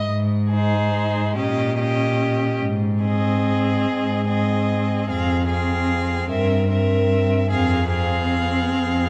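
A moderate concert hall reverb surrounds this short cut from a slow, romantic string quartet movement in Ab major, solemn and yearning, flowing in a rubato 6/8 at 49 BPM. A rich second violin opens at 0.0 seconds, and the close, up-front cello follows with a smooth, even bass. From 0.5 seconds a distant viola adds expressive portamento, while the first violin carries a focused, warm melody with vibrato over chords that move from Ab through Eb7/Bb and back to Ab, then on to Fm and C7/G before settling on Fm.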